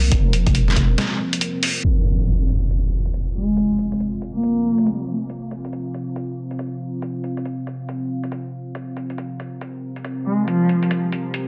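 A dense, heavily limited mix with light reverb and a dulled, filtered top opens onto a meditative, cavernous stretch of deep dubstep, cut from a longer piece and riding a swung, half-time feel. A dark, detuned sawtooth pad with a sub octave and warbling chorus sustains its chords throughout, while a soft triangle-and-sine wobble bass sounds only in the first second alongside a tape-warm, layered electronic kick. A gritty, pitched-down sampler-style kit of hi-hat and medium-tuned snare, each muffled by a low-pass filter, sits up front in small-room ambience from start to finish. After a brief break, an electronic impact lands at 1.8 seconds as a filter sweep begins moving over the pad. A single bowed cello, dark and expressive with vibrato and portamento, enters at 3.4 seconds trailed by dub echo and returns briefly near the end.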